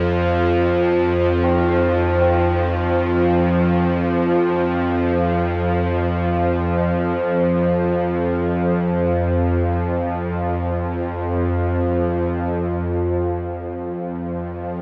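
A tense, string-like bowed drone with a detuned edge sits up front from the start of this dark, desolate ambient excerpt in free time, joined at 1.4 seconds by soft, solemn tubular bell arpeggios in the background that carry tape echo and shimmer reverb and fade out by 12.3 seconds, leaving the drone alone until 14.8 seconds, all inside a huge, wet reverb and the warbling pitch drift of worn cassette tape.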